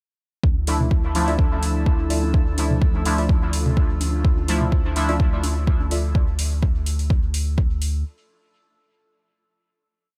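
A steady four-on-the-floor kick drives this dub techno piece, its deep, overdriven thump sitting up front, while metallic open hi-hats, also overdriven, add a lightly swung pulse from 0.7 s. A soft, round sub bass holds the root from 0.4 s to 8.0 s, and electronic congas and toms, analog in character and re-recorded in a small room, sit in the background with dub echo. A juicy, resonant polysynth with filter sweep, phaser and chorus places sparse echoing chord stabs, one shape moved in parallel, while warbly lo-fi keys add their own nostalgic echoing stabs higher up. An airy, breathy pad with a slow attack and a moving notch sustains chords beneath, and a glassy texture of drifting overtones holds a single high note deep in the mix. The mood is hazy and cavernous, with sidechain pumping on the bass, pad, stabs, keys, percussion and glassy texture, though the overall sound stays dry with little reverb.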